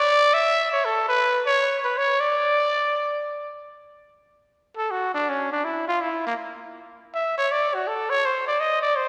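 A swung 4/4 pulse at 162 BPM drives this swinging jazz excerpt in D major, where a lone growling trumpet, raspy and breathy with vibrato, sits up front from the opening and ranges from Bb3 to E5, stepping into a featured solo at 3.8 seconds as a long concert-hall reverb blooms behind it.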